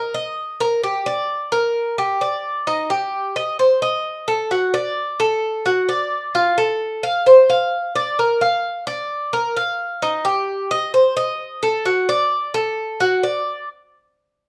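Warm and danceable, this 13.7-second fragment of a longer Latin piece features a lone acoustic Cuban tres, its picked double strings, some octave-doubled, giving a mellow yet metallic voice placed up front in a moderately reverberant large studio.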